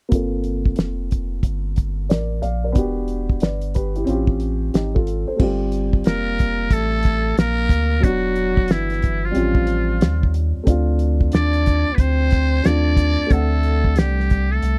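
A dry, close recording with a 1970s studio character frames this smoky, mellow jazz-hop excerpt, cut from a longer piece and carried by a swung hip hop groove. A cloth-damped drum kit sits up front with a thuddy, fat snare, tight kick, dark cymbals and rolled-off top, while a round, sine-like sub bass holds the low end with a fast attack and long sustain. A woody upright piano plays the chords through a low-pass filter, its vintage tone intimate enough to reveal the noise of its action, with a filter sweep running over it until 5.4 seconds as the harmony moves through Gm11, Em9 and A7alt. At 6.1 seconds a trumpet with a metal mute takes the melody, buzzy and raspy with vibrato, scooped notes and a growling edge, while a breathy, whispered trombone enters at the same moment on a soft-attacked second line. The progression returns and then settles on Dm7 and D7 as the passage breaks off at 14.8 seconds.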